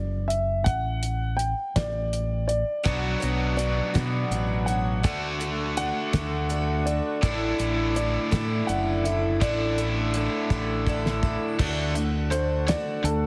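Nostalgic and jangly, this short cut from a longer folk rock and heartland rock piece moves at 55 BPM in a straight 6/8, in D major. A dark, mellow concert grand piano carries the melody over a round, up-front fingered electric bass and a damped 70s drum kit with a fat snare, tight kick and rolled-off top. At 2.8 seconds, a shimmering, octave-doubled twelve-string acoustic guitar joins with boxy picking and audible finger squeak. It arrives alongside a bright, double-tracked overdriven electric guitar riff and a very quiet, clean tonewheel organ holding sustained chords through a rotary speaker. The harmony moves through Asus4, D/A, Bmadd9 and Dmaj7, and a drum fill leads into a brief piano solo at 11.6 seconds as the chords settle on D. Light studio reverb and heavy compression give the mix a radio-ready sound.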